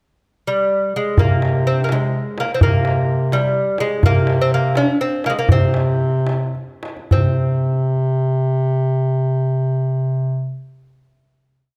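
A bright, delicate gut-strung lute opens at 0.5 s with an ornamented modal melody on doubled strings in this longing, hypnotic Persian ensemble piece in 6/8, joined at 1.2 s by a mellow, roomy bass clarinet placing its bass on the low strokes of a tight, hard-handed tombak heard in a large room; the music slows, the drum stops at 7.4 s, and lute and clarinet sustain a final note under light reverb.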